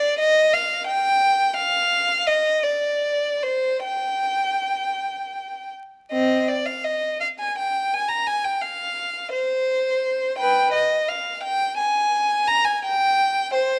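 Moving in a lilting 6/8 at roughly 49-59 BPM counted in dotted quarters, the pulse stretches and relaxes with a free, rubato feel. This is a baroque-style suite movement for unaccompanied violin in C minor, solemn and introspective in mood, and cut from a longer piece. A single bowed violin carries everything from 0.0 to 13.8 seconds, ranging from C4 up to Bb5, with a rich, focused tone and singing vibrato placed up front. Its opening phrase is restated from 6.1 seconds, deepening the reflective character. Close, detailed microphones and light reverb frame the instrument intimately, while a faint vinyl crackle lends an aged patina.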